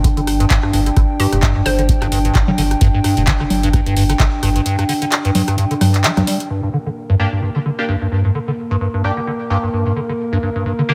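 Acid house at 130 BPM in G minor, hypnotic and gritty, where a squelchy, resonant acid bass riff with phaser and tape saturation sits up front over a moody, detuned analog pad pumping with the sidechain, a round, dark bass and deep kick that drop out by 4.6 seconds, a booming drum machine of congas, handclaps, metallic hats and rim clicks, a brief hollow square pluck with chorus and delay, and, as a filter sweep runs over the acid line from 6.5 seconds, nasal band-passed chord stabs from 7.2 seconds, bright with phaser and delay.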